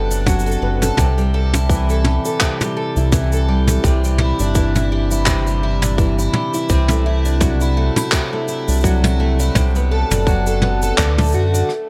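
In this delicate, playful folktronica excerpt, a picked twelve-string acoustic guitar sits up front, its shimmering, octave-doubled arpeggios carrying tape echo and plate reverb over a swung 84 BPM groove in 4/4. Beneath it, a round, deep analog bass holds the low end while a jazz brush kit adds handclaps, rim clicks, shaker and toms, and a tight electronic kick, re-recorded in a large room, anchors the beat. The chords move from Bm7 through Am7/C, Cadd9 and Dadd9/C before returning to Bm7 and landing on D, where a drum fill and a stop arrive at 11.7 seconds.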